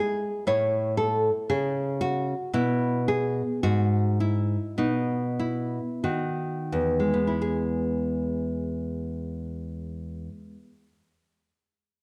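Classical baroque-style dance for solo nylon-string guitar in E major, flowing and serene at a rubato 43-61 BPM, the full-bodied fingerpicked guitar sitting up front from 0.0 to 11.0 seconds and slowing through its opening passage over Amaj7, G#m7 and B before settling on E at 7.4 seconds, all captured with close, detailed microphones in a wet recital hall reverb in this excerpt from a longer piece.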